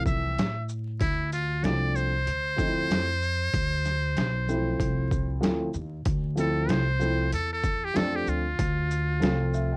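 Jazz-hop with a boom bap foundation, this mellow, cool fragment of a longer piece moves at 95 BPM in 4/4 with a swung sixteenth feel, set in D dorian and opening on a Dm9 chord. A trumpet with a metal mute carries the melody up front, its buzzy, thin tone shaped by a light vibrato and a soft attack in a jazz solo style. Beneath it, a dark upright piano supplies woody accompaniment with long sustain, while a pizzicato upright bass sits forward in the mix, its steel strings given extra body by transformer saturation. The sampler-style drum kit, pitched down and compressed with overdrive, pairs a thumpy kick and medium-tuned snare with hi-hat and shaker for a gritty pulse. The whole recording carries the character of worn cassette tape, with warbly pitch drift, vinyl crackle and light reverb. A second section arrives at 6.1 seconds, and the piano adds a short fill at 9.2 seconds before the fragment ends.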